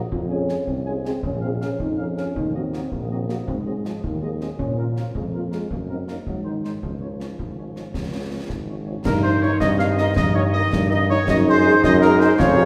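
A mellow solo cornet carries the melody of this spirited, proud military-style march for wind band, sung with a light vibrato and heard from a distance in a roomy space. Beneath it, a warm tuba sits up front on the bass line, while a euphonium with a smooth top plays a second line and a French horn section fills in accompaniment in the background. A concert bass drum, snare drum and clash cymbals keep the straight 6/8 stride, the cymbals bright against the brass. At about 9.1 s the music moves into a new section, where a very quiet trombone section adds sustained chords and a hollow, airy small flute group with a crisp attack joins on a second line. The whole band sits further back in a reverberant scoring stage, and the recording is cut from a longer piece.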